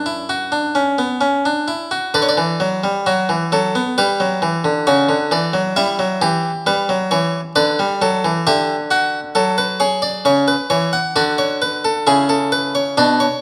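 A lone high F#5 rings out on a solo Italian-style harpsichord, bright, nasal and up front, opening this joyful, elegant fragment of a baroque-style three-part fugue. From 2.1 seconds the plucked, thin-toned instrument moves through Bm/D, G, Em, Bm/D and F#m in a straight 4/4, spanning F#2 to F#5. It is tuned to A4 = 444 Hz and set in a moderate recital-hall reverb.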